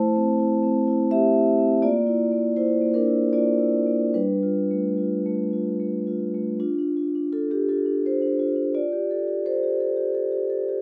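In a rubato 3/4 that drifts between 71 and 87 BPM, this short cut from a contemporary classical piece for solo vibraphone in D minor flows in a hypnotic haze, the soft-mallet vibraphone sounding mellow, dark and ringing with its motor off, placed up front by close, detailed microphones and light reverb as it moves from Am7 through Bb and G9, then shifts to Dm7 at 6.6 seconds before ending on Fadd9.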